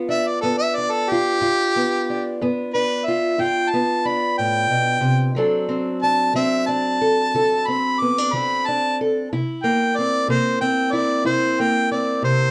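A boxy parlour steel-string guitar opens this fingerpicked acoustic country blues excerpt in G mixolydian, rolling along in a slow 12/8 at 61 BPM, with a clear harmonica joining up front almost at once to carry the melody. The harmonica plays a solo with light vibrato and scooped, jazz-style notes over the guitar's accompaniment, moving from G7 to D7 at 5.4 seconds and to C7 at 9.3 seconds. Set in moderate studio ambience with a dark production, the duo sounds rollicking and gritty.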